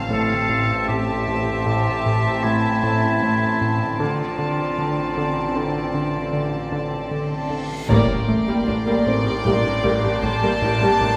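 Uneasy and eerie, this cinematic suspense cue, cut from a longer piece, moves at 77 BPM in 5/4 over Am7 and Dm7/A, with string sections played sul tasto: floating violins carrying the melody and a second line, a dark viola section in the background, a very quiet intimate cello section with light vibrato, a very quiet double bass section, and a distant high violin texture. A bright, vintage clarinet sits up front in a classical style from 0.1 to 7.1 seconds, while a fat, detuned analog sawtooth bass riff, a resonant drone with moving overtones and chorus, and a soft felt-muted upright piano thicken the low and middle registers. A huge reverse cymbal rises at 7.5 seconds into a band accent and impact at 7.9 seconds as the harmony shifts to Gm/A, all set in a wet recital-hall reverb.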